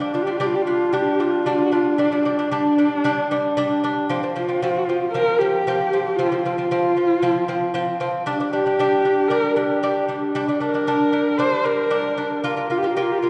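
A dark, husky horsehead fiddle carries the bowed melody with vibrato and expressive portamento, its slapback echo trailing behind, while a bright, delicate fingerpicked lute with double gut strings plays arpeggios beneath in this proud, vast Mongolian folk excerpt, both set in a lush concert hall reverb heard from further back in the room.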